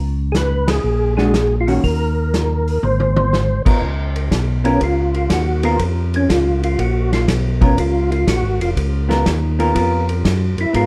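A full, clean tonewheel organ bass line through a slow rotary speaker opens this bluesy, greasy soul jazz organ trio excerpt in swung 4/4; at 0.3 seconds it is joined by a mellow, round percussive organ melody with chorus vibrato and by a punchy, up-front vintage kit with dark cymbals in a pumping small room, a picked hollow-body electric guitar adds accompaniment from 1.2 seconds, and a drum fill at 2.8 seconds leads into an organ solo that runs to the end within a lightly reverberant, warm production.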